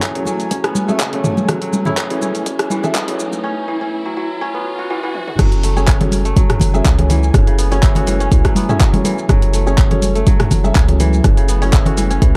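An airy, detuned pad holds an F# minor chord under ringing, crisp kora arpeggios and soft stabs from a felt-muted upright piano with audible action noise, both kora and piano pumping with sidechain and trailing tape echo, in a warm, spiritual afro house excerpt at 123 BPM with a gentle swing. A deep, boomy 808-style bass, a tape-warm electronic kick and a deep house kit of claps, hi-hat, rim click, shaker, toms and crash play from the start alongside close, damped congas, while an electronic riser enters at 1.1 seconds and a break and swell lead through a drum fill into the drop at 5.4 seconds. The production is dark with light reverb, the kick and bass standing most prominent.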